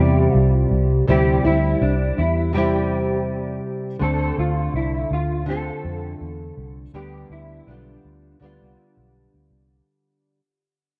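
Indie pop with a bedroom pop feel, this wistful, mellow excerpt moves at 82 BPM in 4/4 with a light swing on the sixteenths, cut from a longer piece and fading out across its length. A nylon-string guitar carries the accompaniment up front, its classical, thumb-plucked tone marked by finger squeak and given an analog chorus with a warbly pitch drift. Beneath it, a vintage muted fingered electric bass sounds round, punchy and foam-muted, sitting prominently in the mix. A mellow electric guitar plays the melody in a clean, dark, fingered voice, set lower in the balance and thickened by an ensemble chorus, stopping at 9.5 seconds. The harmony moves from C to Dm7 at 4.0 seconds and G7 at 6.9 seconds, all bathed in a moderate plate reverb and the worn, wobbling character of old cassette tape.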